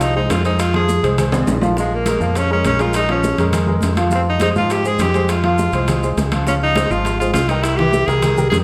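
A wet, roomy sound places the band a little back in a large studio, though the tenor saxophone and fingered electric bass still sit up front in this driving, fiery Afro-Cuban jazz clip in F minor, cut from a longer piece at 204 BPM in a straight 4/4. The bright, punchy saxophone carries the melody throughout its 8.6 seconds with a light vibrato and a forceful, present jazz solo voice, while the baby grand piano adds warm, worn, present accompaniment beneath it. The electric bass comes through warm, direct and amped, anchoring the low end. The percussion stays further down: damped, thin-skinned congas struck with hard hands, tight high-tuned bongos played with soft hands, ringing metal-shelled timbales in the background, and grainy, saturated maracas, with a drum fill from 1.3 to 1.8 seconds. The harmony moves from Fm7 to Bbm7, back to Fm, then through Dbmaj7 to a closing C7.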